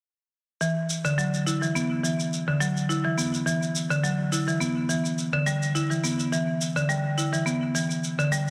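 Organic downtempo in E minor at 105 BPM with a lightly swung 4/4 feel and a mystical mood: from 0.6 s a buzzing, woody marimba struck with hard mallets sits up front, playing bright, airy arpeggios between D3 and E4 through a low-pass filter and delay, while a quieter layered electronic shaker, re-recorded in a small room, keeps time beneath it, all set in a lush 2.2-second hall reverb with a dense, heavily limited modern master.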